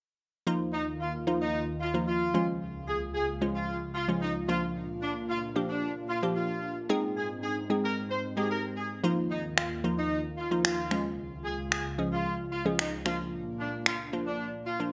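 A clear, up-front horn section carries the melody with light vibrato and a smooth top in this upbeat, summery dance-pop fragment at 112 BPM in 4/4, moving over chords that cycle from Ebsus2 through Db, Bb and Ab. Beneath it, a glassy, crystalline wavetable pluck with a nasal edge and chorus plays the accompaniment, while an airy, breathy pad with a slow attack and long release holds soft, mellow chords. Electronic finger snaps with gated reverb arrive at 9.6 s, all set in a plate-reverb ambience with bright 1980s-style digital production.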